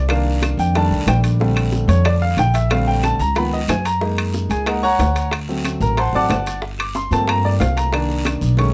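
Sunny and danceable, this brief cut from a longer Afro-Cuban jazz piece moves at a brisk 184 BPM in a straight 4/4. A clear, up-front baby grand piano solos throughout over chords such as Cm7, Bbmaj13 and Gm11, with a dark, woody pizzicato upright bass also up front. Tight, high-tuned bongos sit in the background, while ringing metal-shell timbales, a raspy guiro and very quiet claves fill out the percussion. A drum fill arrives at 8.3 seconds, and light reverb and a mellow top end round off the sound.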